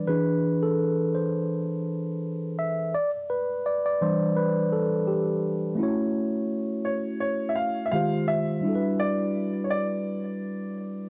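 A mellow tine electric piano opens this short R&B passage on its own, playing clean, direct chords up front with a gentle phaser coloring its tone. The mood is late-night and smooth, moving at an unhurried 84 BPM in 4/4 with a light swing on the sixteenths. The harmony drifts from E7 to Em7, then shifts at 5.8 seconds to F#m7 as a new section begins, sliding on through Fm9 and Em9. At 6.8 seconds a baby grand piano joins with a brief melody high in its register, its warm tone carrying the soft grain of cassette tape. Both keyboards sit close to the listener, wrapped in a light studio reverb within this home recording on cassette.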